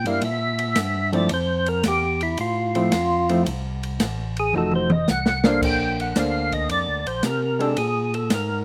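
Soul jazz organ trio swinging at 111 BPM in 4/4, soulful in mood and moving from F major to Bb major at 5.6 s. A percussive tonewheel organ carries the melody as an up-front solo, fat and clicking with third harmonic percussion, chorus vibrato, a slow rotary speaker and slapback echo; a second tonewheel organ holds the bass through its own slow rotary, while a dark, clean hollow-body electric guitar plays picked accompaniment. An airy, polished acoustic drum kit with dark cymbals and a boomy kick sits up front and adds a fill at 4.5 s, all in a dry sound with little reverb.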